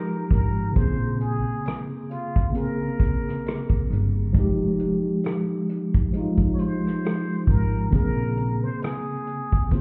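Reflective and nostalgic, this short lo-fi hip hop excerpt drifts along at 67 BPM in 4/4 with a lazy 16th-note swing, moving between Fm9 and Bbm9 chords. A mellow, clean tine electric piano sits up front from the start, its tone softened by a low-pass filter and heard through its built-in speakers. A trumpet with a plunger mute carries the melody in a breathy, whispered jazz style, sounding distant and roomy with a wah-wah colour, a soft attack and tape echo trailing behind it. At 0.3 seconds an upright bass enters with woody pizzicato notes on steel strings, dropping out at 8.5 seconds, while a vintage brush drum kit with a punchy kick, hi-hat and rim click plays up front with a rolled-off top. The whole mix feels muffled, as if heard through a wall, wrapped in club reverb and a layer of vinyl crackle.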